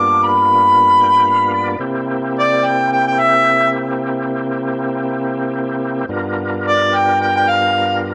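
Rollicking and soulful, this swung blues excerpt at 112 BPM sets a warm, softly attacked, overdriven harmonica with vibrato playing a jazz-style solo melody up front against a thick, key-clicking tonewheel organ with slow rotary speaker, light overdrive and chorus vibrato, which adds a fill from 0.7 to 1.8 seconds as the harmony moves from G7#9 to C7 and back to G7#9 at 6.1 seconds, all bathed in a wet echo-chamber reverb that lends the harmonica a distant, roomy quality.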